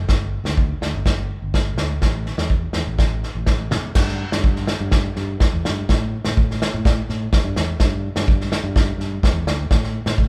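Sunny and carefree, this highlife guitar band recording moves at 125 BPM in a straight 4/4, and it is cut from a longer piece. A fingered electric bass starts at 0.0 seconds with a round, amped tone, moving between G1 and A2. The vintage acoustic drum kit comes in at 0.1 seconds and sits up front, with a punchy kick, a medium-tuned snare, a crash cymbal and a rolled-off top end inside a pumping small-room sound. The band plays live together in one room, and the pair is wrapped in a moderate large-studio reverb. The music shifts into a new section at 4.0 seconds and carries on until both parts finish at 10.3 seconds.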